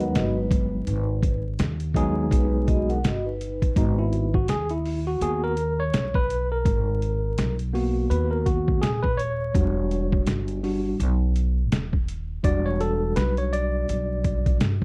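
A gritty, pitched-down sampler-style drum kit sets a swung 83 BPM groove in 4/4, with its thumpy kick and medium-tuned snare up front beside a woody pizzicato upright bass, in a cool, nocturnal jazz-hop cut in G# minor taken from a longer piece. A mellow vibraphone with soft mallets and slow motor vibrato rings until 4.3 seconds, while the clean tine electric piano, heard through its built-in speakers, takes a solo from 3.8 seconds as the harmony moves from G#m7 to G#m9 and then to Em9 at 9.5 seconds. The dry, close 1970s-style studio sound carries a small room reverb and vinyl crackle.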